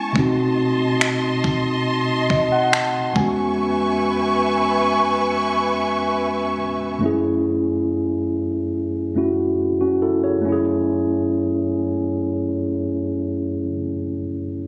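This contemporary R&B cut, taken from a longer piece, moves at a slow 70 BPM in 4/4 with a straight feel in F# dorian, carrying a longing, sensual mood. A mellow tine electric piano sits up front as the accompaniment, its clean tone heard through built-in speakers, and it adds a fill early on before carrying on alone until 14.7 s. A lush symphonic string section holds bowed sustained chords with vibrato and a soft, expressive attack, ending at 7.0 s. A sampler-style 12-bit drum machine, re-recorded in a small room, briefly adds finger snaps and a thumpy kick, stopping at 3.4 s. The harmony moves through B7b9, E6 and F#m9, and the whole is captured on a phone in the room with a light studio reverb.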